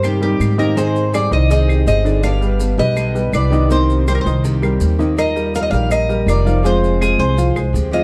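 A straight 4/4 pulse at 163 BPM drives this danceable, sultry slice of Cuban son and guajira in C minor, with woody claves and grainy, mellow maracas sitting close and dry in the background. Up front, a thumpy, steel-strung pizzicato upright bass anchors the low end while a bright, metallic Cuban tres carries the melody, its double strings ringing through an analog delay. A concert grand piano with audible action noise and deep bass adds intimate arpeggios, and a boxy, picked old ladder-braced guitar fills out the accompaniment. From 0.1 seconds, a fingerpicked nylon-string guitar with a deep classical tone and audible finger squeak adds a second line in the background. The chords move from Cm7 through Abmaj7 and G, then turn to Ebadd9 and Fmadd9 in the closing stretch of this excerpt, set in light reverb within a dark, warm production.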